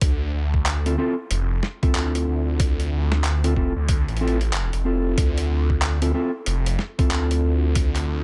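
A swung 16th-note groove at 93 BPM in 4/4 drives this playful, funky glitch hop cut from a longer piece, sitting on a Dm9 chord in D minor. A gritty, pitched-down sampler-style kit of handclaps, hi-hat and a medium-tuned snare pairs with a thumpy, compressed electronic kick, while a thick, swirling detuned saw bass with phaser and tube saturation sits up front. From 0.9 seconds a dark, clean, fingered electric guitar adds stabs colored by spring reverb, delay and sidechain pumping, all in a dry room.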